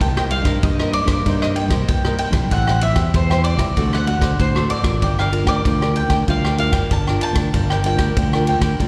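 This short cut from a longer samba and choro piece sounds like a live gig heard through the venue's PA, with a light recital-hall reverb around the band. A bowl-back mandolin carries the lively, yearning melody throughout, its picked double strings ringing out with a slapback echo. A crisp, picked cavaquinho shares that same slapback echo. Further back, a woody, fingerpicked nylon-string guitar with old strings adds a classical colour. Up front, a bright, direct fingered electric bass sits beside a natural-sounding vintage kit, whose punchy kick, ride cymbal and rim clicks have a rolled-off top and a small-room feel. All five parts play for the full 8.9 seconds as the harmony moves from Cm7 through Am7 and D7 to Gm7.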